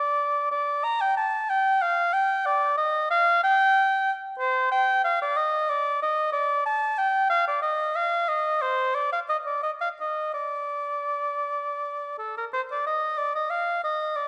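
A wet recital-hall reverb surrounds a warm, up-front oboe playing alone in this brief cut from a longer baroque-style fantasia, its light vibrato shaping a classical line between A4 and Bb5. The mood is flowing yet grave, moving in a rubato 6/8 at roughly 53-64 dotted-quarter beats per minute, tuned to A4 = 436 Hz. A new section begins at 12.5 seconds and carries on until the fragment ends at 14.3 seconds.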